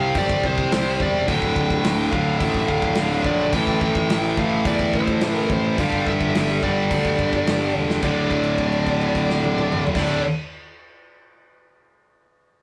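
Heavy metal at 107 BPM in D minor, relentless and weighty, with two bright, picked high-gain rhythm guitars (one up front) churning a low riff through C, Dm, Am and G5 before landing on D5 at 8.0 seconds, a growly fuzz-overdriven electric bass underneath, a distorted lead guitar carrying a warm high melody, and a tight-kicked acoustic drum kit in a small room that throws a fill at 7.7 seconds, leading into a held note, all wrapped in moderate reverb and the warm saturation of a rough rehearsal-room recording.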